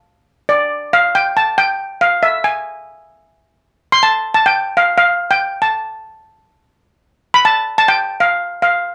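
A small room lends a moderate reverb to this short calypso clip, cut from a longer piece, where a bright, metallic steel pan sits up front and mid-forward from 0.5 seconds onward. Struck with hard rubber sticks, the lead pan carries the whole piece alone in its upper register, its shimmering tone giving the straight 4/4 groove an intense, driving character. The passage moves from its opening section into a second one at 3.9 seconds, with the pan playing through to 8.9 seconds.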